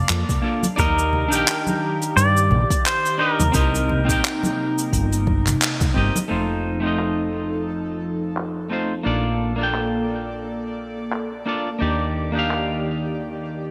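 Blissful sunset chillout at 87 BPM in Bb major with a gentle 16th-note swing, where a clean, fingerpicked pedal steel guitar carries the slide melody until 5.6 seconds over twangy, up-front electric guitar, a breathy, detuned pad with slow attack, and a growly, round fretless bass, while soft brushes with cabasa, handclaps and hi-hat, an overdriven deep electronic kick, and bright congas tucked in the background sit in a lush plate-reverb space with glossy 1980s digital sheen, before a band accent leads into the second part at 6.3 seconds, where a filter sweep runs across the clean electric guitar.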